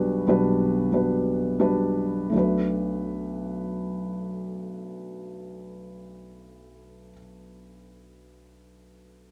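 Folk in an intimate, reflective 3/4, played on a felt-muted upright piano whose soft, mellow accompaniment sits up front in a dry, close 1970s-style studio sound with light reverb, slowing down over the first 2.3 seconds before the harmony shifts from Gmaj7/B to Bm7 in this short piece cut from a longer work.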